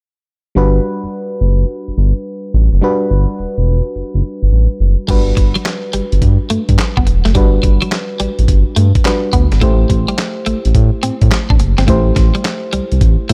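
A mellow FM electric piano and a dark, up-front synth bass with a sawtooth-and-square edge and a touch of ring modulation open this slick, confident new jack swing R&B passage at 106 BPM, with 16ths swung over a Gmaj7 chord. At 5.1 seconds a clean, picked electric guitar riff with subtle chorus enters alongside a gritty, compressed sampler-style drum kit with a thumpy kick, medium-tuned snare, handclaps, hi-hat and crash. The harmony shifts to Am7 at 9.6 seconds, and the dry, close sound keeps the bass and drums prominent.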